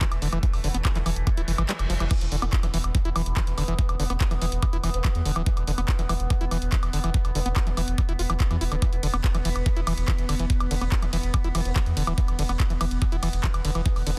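An alien, hypnotic slice of psychedelic trance at 143 BPM, where a squelchy, screaming distorted acid riff with resonant filter sweeps and delay rides over an up-front knocking electronic kick, a layered electronic kit of hi-hat, ride, crash, handclaps and woodblock, a deep, round analog bass, and a phaser-tinged drone of moving overtones with 12-bit grit, while a very quiet formant-sweep wobble bass surfaces in intermittent stretches and a reverse cymbal rises at 1.4 seconds as the kick drops out from 1.7 to 2.1 seconds in a dense, heavily limited mix.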